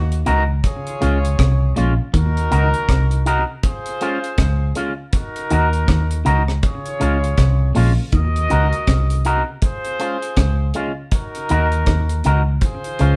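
Laid-back and hypnotic, this roots reggae passage, cut from a longer piece, sits at 80 BPM in 4/4 with a 60% swing on the sixteenths, in E-flat dorian. The harmony rocks between Ebm and Db throughout, anchored by a dark, round, foam-muted vintage electric bass played with the fingers and placed up front. A dry, deep reggae kit joins at 0.1 seconds with hi-hat, a tight kick and rim clicks, while a bright, picked electric guitar through an envelope filter enters at 0.3 seconds as up-front accompaniment, its pitch drifting with a warbly wobble. Further back, a clean, twangy electric guitar plays a low riff soaked in tape echo and the same unsteady drift. A clear, punchy vintage horn section carries a tight second line with light vibrato, and the whole band sounds as if it is playing live together in one room under a light reverb.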